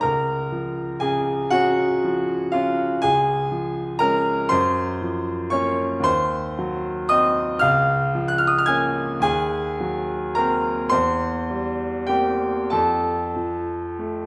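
A mournful, melancholic romantic nocturne for solo piano, this classical excerpt moves slowly in 6/8 at 32-41 BPM with a free rubato feel, its harmony drifting from Bbm/Db through Gbmaj7 and diminished and half-diminished colours before settling on C7/E and F. The bright concert grand sits up front and spans Db2 to Ab6, pairing a brilliant, open tone with deep bass and long sustain. A moderate concert hall reverb of 1.7 s surrounds the instrument, tuned slightly low at A4 = 435 Hz.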